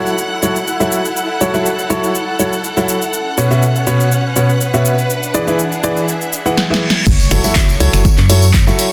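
Piano house at 122 BPM in F# minor, soulful and bittersweet, where a clear, up-front concert grand piano riff with delay and sidechain pumping moves through F#m7, Bsus2 and E7 over distant bowed violin and warm, gliding string sections, a punchy analog drum machine of snare, claps, finger snaps, hats, shaker and crash enters at 0.1 seconds, a background reverse cymbal rises from 6.4 seconds, and at the 7.1-second drop an overdriven electronic kick, a hollow, dark, organ-like FM bass and a faint tambourine arrive with an impact, all set in a lush hall reverb on a dense, heavily limited master.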